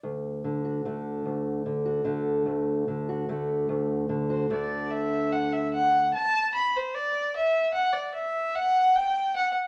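A moderate large-studio reverb gives this anthemic, uplifting folk excerpt in 3/4 a roomy glow. A fingerpicked steel-string acoustic guitar on old strings opens alone with a dark, concert-style accompaniment until 6.1 seconds. A single bowed fiddle, woody and touched with light vibrato, enters up front with the melody at 4.3 seconds, as the music builds from 4.9 seconds.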